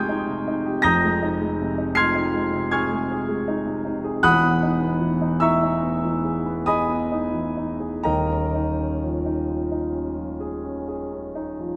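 Dreamy and luminous, this short passage cut from a longer impressionist piece for solo piano moves in a slow, rubato 9/8 at roughly 41-54 BPM counted in dotted quarters, tuned to A4 = 441 Hz. A warm concert grand sits up front with a deep, open bass, spanning Eb1 to C7 as the harmony drifts from Fm9 to Emaj7 at 4.2 seconds and settles on Eb9sus4 at 8.1 seconds. The piano is bathed in a wet concert-hall reverb with a 2.5-second decay.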